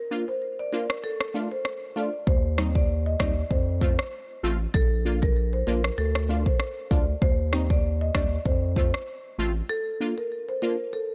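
Bouncy and sunny, this dancehall cut moves at 97 BPM in 4/4 with a light swing on the sixteenths, sitting in Bb major and cycling through Bb, Dm, Eb6 and F. A brassy, punchy synth brass stab with a detuned sawtooth edge and a plucky filter carries the accompaniment from the start, its chorus and moving notch giving it a shimmering, decaying bite. A marimba played with medium mallets carries the melody with a warm tone between A4 and Eb5 just after it, while an electronic afro-pop kit built on a deep kick and rim click arrives at 0.9 seconds, tape-warm and up front. The saturated sub bass enters at 2.3 seconds, thick and sine-based with a fast attack and sustained notes, sitting heavy and forward in the mix. The sound is dry and close with little reverb, and as an excerpt from a longer piece it opens and closes on sparser break passages, before the bass enters and after it drops out.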